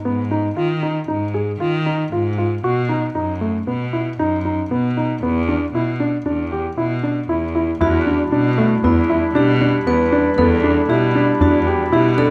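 A dark, worn grand piano with audible action noise spins pensive, hypnotic arpeggios over a clear, bowed cello bass in this contemporary chamber piece in 5/4 at 116 BPM in E minor, joined at 7.8 seconds by a ringing, metallic vibraphone line, mellow sustained woodwind chords and a soft-handed frame drum in the background, all under light reverb.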